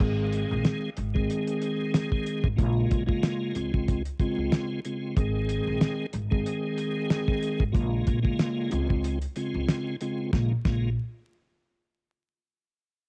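Moody and reflective, this boom-bap hip-hop excerpt in Bb minor sways at 93 BPM with a light 16th-note swing: a cloth-damped, thuddy drum kit with a fat snare, tight kick and dark cymbals sits up front beside a piping tonewheel organ with key click, chorus vibrato and a slow rotary speaker, a woody pizzicato upright bass carries the low end through transformer saturation, a very quiet finger snap joins at 0.7 seconds, and the home cassette recording with vinyl crackle and studio reverb frames it all before a break at 9.0 seconds.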